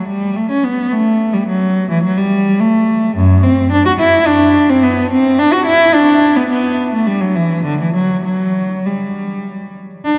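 Radiant and dance-like, this short excerpt from a longer baroque-style suite movement for unaccompanied cello moves in a flexible, rubato triple metre, with a single bowed cello sounding rich, smooth and even with vibrato, close and up front, set within a cavernous cathedral reverb and a dark production touched by vinyl crackle.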